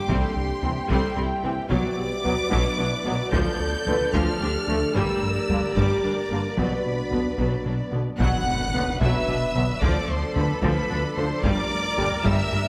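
A brooding, tense hybrid orchestral and electronic film cue in 6/8 at 74 BPM opens with a clear, intense violin section carrying the high melody over a darker, woody second violin line, mellow French horn chords and a deep, moody, warbling ambient pad with chorus and its own reverb. Lush violas, smooth cellos and distant double basses fill out the bowed strings, while a sawtooth synth bass riff and hard-stick taiko drums sit in the background and a very quiet trombone section adds sustained chords from 0.6 seconds. An electronic impact lands at 8.3 seconds as the music moves into a new section, set in a scoring-stage space with moderate reverb.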